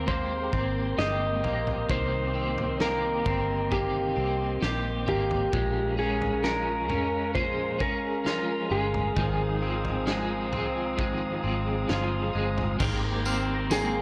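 Ethereal and dreamy, this dream pop excerpt drifts at 66 BPM in Ab major, cut from a longer piece and moving from Abmaj9 to Bbm7 at 5.5 seconds before returning home. An electric slide guitar carries the melody with a compressed, slightly broken-up tone, while a second guitar at the edge of break-up plays fingered, twangy accompaniment through tremolo and ensemble chorus. A third guitar plays picked arpeggios touched by subtle chorus and tape echo. Beneath them, a foam-muted vintage bass gives round, punchy low notes, and a loose indie drum kit with dark cymbals, a punchy kick, toms and tambourine sounds gritty and rolled-off at the top. In the background, a flute-like tonewheel organ holds soft chords through a fast rotary speaker with audible key click, and a very quiet celesta adds delicate, bell-like sparkle. Light reverb and studio ambience frame a dry, saturated hardware sound, and a brief new section begins at 12.8 seconds.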